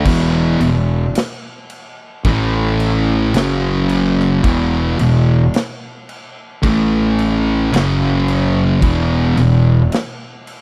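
Two thick fuzz guitars open this brooding, ominous stretch of stoner and doom metal at 0.0 seconds, grinding out a distorted, picked riff through E5, A5 and F#5 power chords in a slow, straight 4/4. One guitar sits up front with a warm fuzz tone, while its twin lurks in the background with a darker edge. A fingered electric bass joins almost at once, its overdriven fuzz tone growly and direct as it holds down the low end beneath the riff. The big acoustic rock kit carries a big-room sound, with a punchy kick, a medium-tuned snare and bright crash cymbals, and it rings on until 10.6 seconds after the strings stop. The whole fragment has a dry, close, 1970s-style studio sound, lifted from a longer piece.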